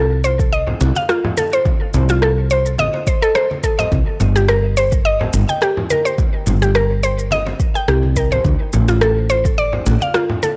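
A mallet-like synth pluck and a woody fretless electric bass open this hypnotic, earthy organic downtempo piece at 106 BPM in 4/4, with a light swing on the sixteenths. The pluck plays up-front arpeggios in a round, percussive FM tone with a fast attack and short decay, thickened by chorus and analog delay. Beneath it, the bass sits low and growly, colored by tube saturation and sidechain pumping. An electronic shaker and rim click arrive at 0.2 seconds, and a deep, overdriven electronic kick drum follows at 0.4 seconds, both re-recorded in a small room for a layered, produced punch. Congas join at 0.7 seconds, ringing with hard hands from a distant large room, while the harmony moves from F7 to Cm7 to Dm7. Digital ambience and a dry, gritty cassette character frame this short fragment, cut from a longer piece.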